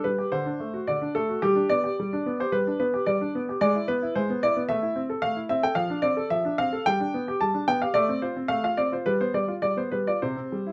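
Elegant and cheerful, this short cut from a classical-period piano sonatina features a solo baby grand, clear and natural with a short sustain, played up front with a flexible rubato feel through a progression that settles onto a bare C5 chord at 10.2 seconds, all framed by light reverb and a dark production.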